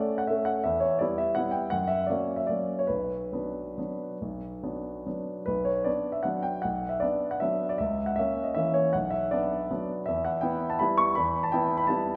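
A solo grand piano, warm, polished and present, opens a wistful, elegant classical waltz in B minor, moving in a flexible rubato 3/4 at around 132-174 BPM. The harmony passes through E minor and F# before settling on B minor, and a second section from 5.5 s brings a diminished colour before returning to B minor and E minor. A lush recital-hall reverb, heard from further back in the room, surrounds this short passage cut from a longer piece.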